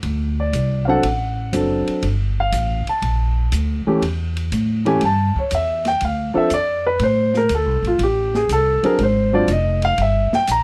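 Swinging at 121 BPM in 4/4, this sophisticated jazz piano trio excerpt features a dark, mellow concert grand taking the melody up front from 0.4 seconds over a woody pizzicato upright bass and a softer, natural-sounding kit with dark cymbals and a boomy kick, all captured in a dry, close 1970s-style studio sound as the chords move from D7 through Gm9 and Ammaj7 to Gm.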